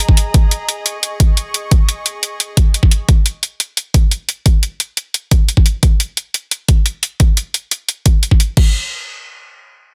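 Aggressive and futuristic, this dark technical drum and bass cut from a longer piece drives at 175 BPM in a straight 4/4. It opens on a bowed chamber string section together with an overdriven dubstep kit. The strings, rich and earthy with light vibrato and a smooth top, pump under sidechain as they fade out by 3.1 seconds, while the kit, placed up front, adds crash cymbal and bright hi-hats. An overdriven electronic kick enters almost at once: a layered, knocking sound re-recorded in a small room and also placed up front. Both drum parts stop at 8.6 seconds, where the harmony built on G#5 falls away. The mix is dry, dense and heavily limited in a modern style.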